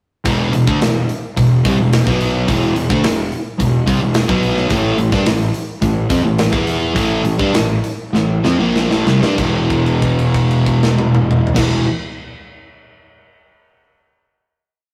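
A tight, up-front metal drum kit with a medium-tuned snare and tight kick drives this short, menacing hard rock piece in E minor at 94-108 BPM, under picked power-chord riffs from a sludgy distorted guitar and a crunchy overdriven guitar set further back. A growly fuzz bass doubles the guitar riff in driving eighth notes while the harmony moves from E5 to A5 at 4.7 seconds, where the tempo begins to slow, and a drum fill arrives at 8.1 seconds. At 9.4 seconds the band lands on a final E5 chord, held in a rough rehearsal-room sound with warm saturation and a moderate stone-room reverb.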